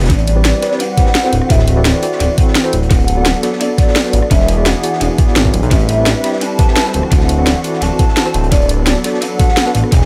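Echo-heavy and lightly reverberant, this soulful, rolling liquid drum and bass at 171 BPM sets a hollow, woody clarinet-like synth lead with vibrato and dub echo over a worn tine electric piano with tremolo, a mellow analog pad pumping with sidechain in the background, a saturated, detuned synth bass up front, a gritty, thumpy electronic kick, an overdriven garage drum kit with a cracking snare, and a dark, crunchy breakbeat kit tucked behind, moving through Am11, D9, Bm7/D and E7.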